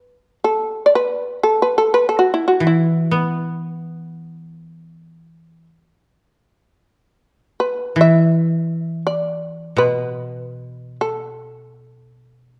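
Austere and calm, this short excerpt of Japanese chamber music unfolds in free time in E suspended pentatonic, with a buzzing, percussive, plectrum-plucked fretless shamisen carrying the melody up front from the opening and a dry, woody koto played with fingerpicks joining at 2.6 s to accompany in its lower register, all set in a dark production with a reverberant recital-hall ambience.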